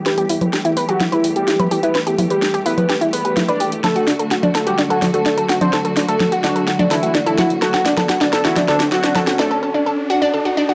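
Melodic techno at 127 BPM in 4/4, a dramatic, hypnotic build-up cut from a longer piece, moving from E minor to D at 3.8 seconds under filter sweeps on the strings, lead and pluck. An up-front house kit of congas, bright hats and a cracking, overdriven snare plays a drum fill, while a round, detuned sawtooth pluck spins chorused arpeggios through analog delay. A fat, warbling vintage lead sings with vibrato and a sub octave, a clear, bowed studio string section holds low-passed chords over a very quiet, thick bass, and a background riser enters at 6.7 seconds and carries with the pluck to 10.7 seconds, all in a home cassette recording with moderate studio reverb.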